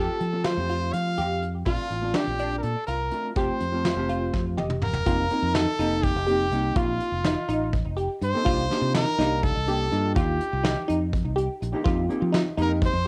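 A brilliant, punchy trumpet opens with a forceful jazz-style lead, light vibrato and scooped notes over a dark, double-tracked hollow-body guitar, crystalline chorused wavetable-pluck arpeggios trailing analog delay and a round fingered electric bass, while soft brush drums with a fat snare join at 0.2 seconds in this driving, tense progressive 7/8 band piece, where drums and guitar share a fill at 4.3 seconds before a new section begins at 5.1 seconds, with plate reverb on the trumpet, guitar and pluck and the intimate feel of a home cassette recording.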